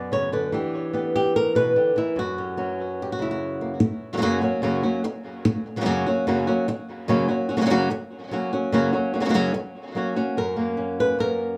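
A lone fingerpicked flamenco guitar opens this brief, intense excerpt, its dark acoustic tone sitting up front with a touch of tape echo. The harmony moves from Bm through Em7 to a bare F#5 before settling on F# at 3.8 seconds, giving the short passage a dramatic, tightly wound feel. A small room's moderate reverb and a studio ambience surround the playing until it breaks off at 11.6 seconds.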